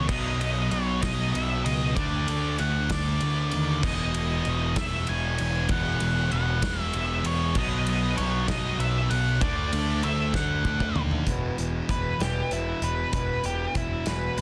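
An up-front, overdriven fuzz bass drives this anthemic, restless excerpt of quiet-loud alternative rock at 64 BPM in a straight 6/8, alongside a dark octave-fuzz lead guitar melody, a thick picked fuzz riff, a scooped high-gain riff guitar that drops out at 11.3 seconds, and a loose indie drum kit with a medium-tuned snare and tight kick in a pumping small room, until a drum fill leads into a lead guitar solo where a fingerpicked acoustic archtop adds arpeggios with audible finger squeak, all in a dense, heavily limited modern master.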